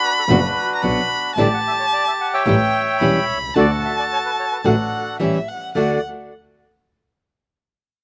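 A dry, close-sounding outdoor recording opens this passionate, nostalgic tango excerpt, with a reedy bandoneon carrying the rubato melody over a warm violin second line rich in vibrato and portamento, while a bright fingerpicked nylon-string guitar and a nasal, earthy bowed double bass join at 0.3 seconds as the chords move from Bm through A7 to D.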